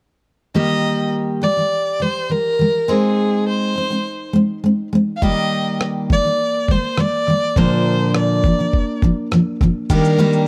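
A picked steel-string acoustic guitar opens this short acoustic pop cut, its full-bodied jumbo tone carrying audible finger squeaks. Almost at once a single bowed violin takes the melody, rich and focused with a smooth top and vibrato, giving the heartfelt, sunny mood its voice. At 5.2 seconds a dusty, sampler-style soul drum kit arrives: overdriven and gritty, with a thumpy kick, rim clicks, shaker and a crash cymbal. The harmony moves from Ebmaj7 to Ab, back to Ebmaj7, then to Bb before settling on Ebmaj7 again. All three parts sit up front in a dry, intimate sound, captured by close microphones that bring out fine detail.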